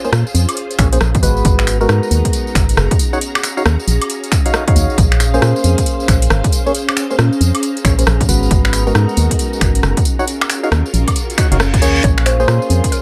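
Moody and bouncy, this cut from a longer UK garage track rides a swung two-step groove at 136 BPM in Bb minor, cycling through ninth chords on Bbm9, Abm9 and Ebm9. An up-front, hollow FM bass with an organ-like, decaying tone anchors the low end, while a nasal, percussive organ stab with subtle chorus and tape echo punctuates the harmony. The drums layer a tape-warm house kit of finger snaps, metallic hats, rim clicks, tambourine and woodblock, re-recorded in a small room, with a punchy analog kick entering at 0.8 seconds. Behind them sit a silky vintage string machine with ensemble chorus and a warbling, nostalgic lo-fi pad with phaser and reverb, both pumping against the sidechain. A reverse cymbal sweeps in at 11.5 seconds, and at 12.0 seconds a woody, mellow mallet-like pluck with chorus and phaser appears in the background, all under a light reverb.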